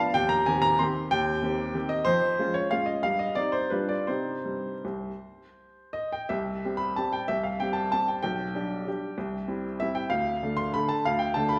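A lush recital-hall reverb surrounds a single upright piano, caught up front, with its woody tone, long sustain and audible action noise giving it an intimate, vintage character. This is a short classical piano waltz in 3/4, taken with a free rubato feel, and it is cut from a longer piece. The mood is nostalgic and bittersweet, with the piano covering a span from deep bass notes up into the bright upper register. The opening phrase moves through chords such as Cm/Eb, Db/F and G7 before settling on Cm at 4.1 s. A new section begins at 6.3 s on a C chord and passes through G/B before reaching Dm at 10.1 s, shortly before the piano stops at 11.6 s.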